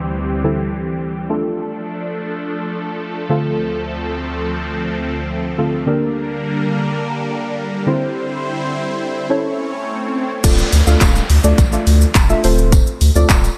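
Confident yet bittersweet, this dance-pop cut at 105 BPM in D minor opens with soft, warbling chord stabs treated with chorus and a lush, bright supersaw pad with phaser, both pumping under a filter sweep, until an electronic swell and downlifter entering at 9.5 seconds lead into a drop at 10.4 seconds, where the pad stops and a thick, saturated sub bass, layered pop drums with a punchy kick, handclaps, hi-hat, shaker and crash, and a jingly tambourine in the background join the stabs.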